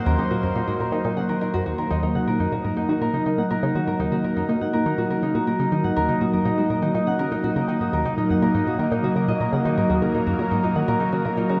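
Bathed in a wet concert-hall reverb, this cosmic, mysterious slice of sequencer-driven ambient space music moves at 122 BPM in Eb dorian, with a lush, thick unison pad holding slow-blooming sustained chords through chorus and shimmer reverb, a mellow, ringing Celtic harp playing fingerpicked arpeggios through a low-pass filter, analog delay and shimmer, and a tight, driving detuned sawtooth synth riff with a plucky filter entering at 0.1 s under chorus, phaser, analog delay and shimmer reverb.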